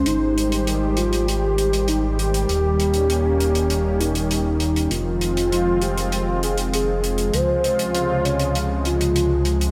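Nostalgic and driving, this synthwave excerpt in F minor moves at 99 BPM in a straight 4/4, with a soft, round octave-layered synth lead carrying the melody through chorus, phaser, delay and cassette-tape coloring over a smooth, warbling analog pad with vintage 12-bit grit, a glossy pulse-width-modulated synth bass, and an airy acoustic hi-hat entering at 0.1 seconds, all set in a lush hall reverb with bright 1980s-style digital production as the chords cycle from Abmaj7 through Eb7 and Fm7 to Dbmaj7.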